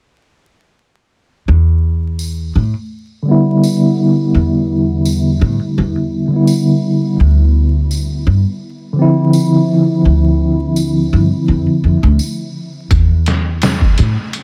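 Trip hop in E phrygian, this dark, hypnotic piece moves at 84 BPM in 4/4 with a light 16th-note swing, tuned slightly flat to A4 = 435 Hz and cut from a longer work. A woody, gut-strung upright bass opens at 1.5 seconds, plucked pizzicato and sitting up front between D2 and A2. A soft, bright tambourine follows faintly in the background, and at 3.2 seconds a mellow tine electric piano comes in with tremolo, tape echo and a low-pass filter sweep, its clean tone heard as if through its built-in speakers. The harmony settles on Em7 before shifting to Dm9, then the chords drop away as a compressed, pitched-down sampler drum kit arrives at 12.9 seconds with a thumpy kick, a medium-tuned snare and hi-hat, sounding muffled and re-recorded in a small room. The whole mix is dreamy and soaked in a huge ambient reverb, with vinyl crackle hanging over it.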